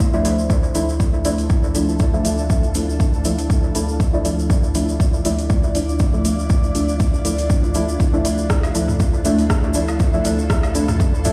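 A lightly swung groove is driven by an overdriven electronic kick up front, with metallic hi-hats and rim clicks from a deep house kit trailing dub echo, a grainy tube shaker underneath, and overdriven electronic woodblock and toms joining in the background at 8.6 s. In this hypnotic, hazy dub techno excerpt, a pure sine sub bass sits dark and smooth beneath nasal, chorused chord stabs treated with phaser and dub echo. A blurred, detuned granular cloud pad drifts behind them, with the pad, bass and stabs pumping to the sidechain, and the mix rings out through a big sound system in a bare stone room.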